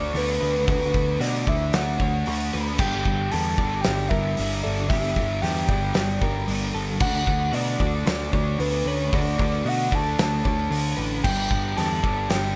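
Shoegaze-tinged dream pop rock at 114 BPM in D major, this blissful, wistful excerpt drifts through D6, Gm6 and G chords, with a round, dark octave-layered synth lead carrying the melody through chorus, vibrato and tape echo. A thick fuzz guitar riff sits up front alongside a loose acoustic drum kit with a fat snare, punchy kick and dark cymbals in a pumping room, while a picked electric bass adds punch underneath. A clean, compressed twelve-string electric guitar plays arpeggios in the background with subtle chorus and tape echo.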